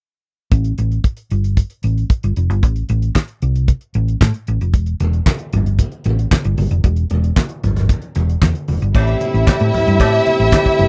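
A dry, close 1970s-style disco groove opens at 0.5 s with a damped acoustic drum kit and a round, punchy hollow-body electric bass, both up front and danceable. The kit has a fat snare, tight kick, handclaps, hi-hat, crash cymbal and dark cymbals with a rolled-off top, while the fingered bass sits dark and amped in the low register. Low-tuned congas with a thick skin join at 5.0 s, set distant in a large room, as the harmony moves from A7(no3) to Em. At 8.9 s the arrangement turns glamorous: a lush, bowed studio string section with vibrato carries a second line, and a distant French horn section holds soft-attack sustained chords over Am7. A metallic cowbell sits in the background of these closing moments, before the piece is cut off.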